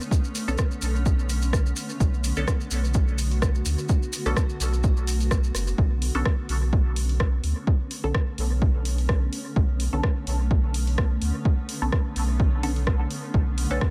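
A cloudy, blurred granular pad breathes with sidechain pumping over its own reverb as grainy, close maracas shake alongside it, soon joined by a punchy, up-front electronic kick in this meditative, nocturnal dub techno excerpt. A deep house kit of dark hi-hats and rim clicks trails dub echo, while a muted, detuned filtered chord stab with phaser and echo pulses over a clean, smooth sine sub bass from 0.5 seconds. The maracas drop out at 5.8 seconds, leaving the dry, Bm9-hued groove to roll on.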